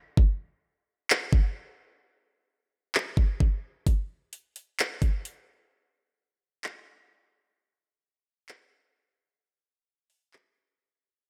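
A half-time hip hop groove in 4/4 at 130 BPM runs through this short excerpt, carried by an electronic R&B drum kit with a knocking kick, metallic hi-hats and handclaps that sits up front from 0.2 to 10.4 seconds. A digital ambience sits alongside it in an ethereal, melancholic setting, while the passage opens on a break that lasts until 3.9 seconds and fades out across its full length.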